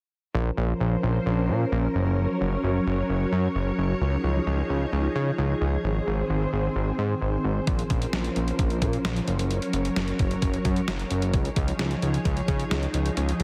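Synth-pop at 131 BPM in a nostalgic, bright mood, this short excerpt opens at 0.3 seconds with a silky, slow-attack string machine holding sustained chords through ensemble chorus and shimmer reverb over a fat, detuned sawtooth analog bass with a filter sweep, cycling through Bbmadd9, Gb, Dbadd9 and Ab before a detuned, tape-warm 8-bit drum machine with a thumpy kick and medium-tuned snare joins at 7.7 seconds, all set in a concert hall reverb with a heavily compressed radio sound.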